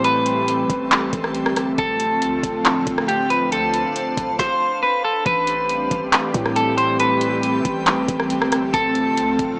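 Set at 138 BPM in 4/4 with a half-time feel, this atmospheric cloud-rap excerpt in A minor drifts in an ethereal, hazy mood, its smooth R&B drum kit placing a knocking kick, woody snare, handclaps, rim click and metallic hi-hat up front, with a small-room character to the electronic kit. Beneath it, a deep, boomy 808-style bass with a sine tone and fast, decaying attack sits mellow and low in the mix. An airy, breathy pad holds sustained chords with a slow attack and long release, its detuned, warbling vintage tone given chorus and a sidechain pumping motion. Up front, a clean, picked electric guitar carries the melody with subtle chorus and tape echo, while a reversed, swelling granular texture with its own built-in reverb glimmers brightly in the background. The harmony moves between Am7 and Dm7, returning to Am7 at 5.3 seconds, and the whole piece sits in a lush hall reverb with a small-speaker sound.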